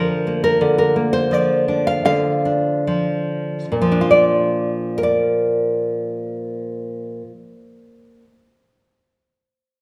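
A wet recital-hall reverb surrounds this peaceful, pastoral folk excerpt in Bb major, where a solo nylon-string guitar, full-bodied and up front with audible finger squeak, is fingerpicked in a rubato 4/4 at roughly 70-90 BPM, slowing down over the first 3.7 seconds as the harmony moves from Bb/D to Bb.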